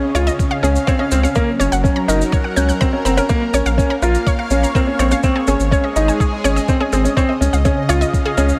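Melancholic and moving, this piano and strings electronica cut from a longer piece runs at 124 BPM in a straight 4/4. A worn, intimate grand piano with audible action noise plays a riff up front with tape echo, over a lush, detuned sawtooth pad with chorus, phaser and sidechain pumping, and a bright filter-plucked synth playing arpeggios through chorus and tape echo. A round, deep analog bass and a compressed, muffled, pitched-down kick from 0.4 seconds anchor the low end, a natural acoustic shaker adds texture, and light small-room reverb frames the chords moving from Dbadd9 through Gb, Bbm and Absus4 back to Dbadd9.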